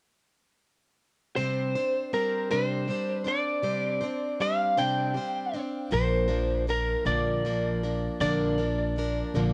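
A lightly driven electric lead guitar carries the melody in this wistful, reflective rock fragment, its picked, compressed tone slightly broken-up and sitting up front with a cassette-tape coloring. From 1.4 seconds a picked, plugged-in steel-string acoustic guitar plays alongside it as accompaniment, boxy and up close, with an audible finger squeak and the same tape character. The pace is slow, at 53 BPM counted in dotted quarters, in a straight 6/8 with tuning set at A4 = 439 Hz. The harmony rests on Csus2 before moving to Bb at 5.9 seconds, where a woody, warm pizzicato upright bass enters up front and plays through to 9.5 seconds. A moderate small-room ambience and the homespun cassette recording give the excerpt, cut from a longer piece, an intimate, close-at-hand feel.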